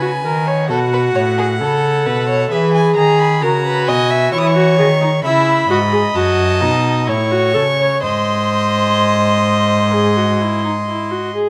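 The cello anchors this solemn, baroque-style fugue for string quartet with a nasal, gut-string bass line that sits up front, while the viola adds reedy accompaniment with an airy bow. Two period-style violins carry the melody and a second line with light vibrato at a steady 63-66 BPM in 4/4. The harmony moves through E, C#m and F#m toward G#, and close, detailed microphones capture the excerpt in a moderate scoring-stage reverb.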